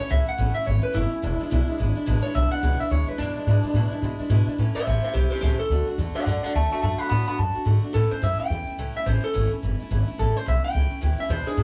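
A live-in-one-room sound with light reverb and a dull top end frames this upbeat, rollicking swung rockabilly cut, where a twangy, slightly broken-up electric guitar through a small old amp carries the melody up front over a full-bodied picked steel-string acoustic guitar and a thumpy, woody pizzicato upright bass on gut strings, all three playing throughout the 11.6 seconds as the chords move from A through E7, back to A, then to D and home to A.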